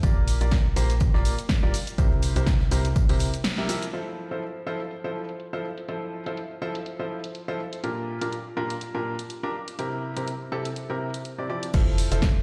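A bright, worn baby grand piano riff with audible action noise opens this joyful, uplifting piano house excerpt, riding sidechain pumping and digital delay over a hollow, organ-like FM bass, a punchy electronic kick, a distant brushed jazz kit and an analog drum machine; the bass, kick and brushes drop out around a break at 3.4 seconds, leaving the piano and the drum machine, whose drums carry a filter sweep, before the fuller groove returns at 11.7 seconds.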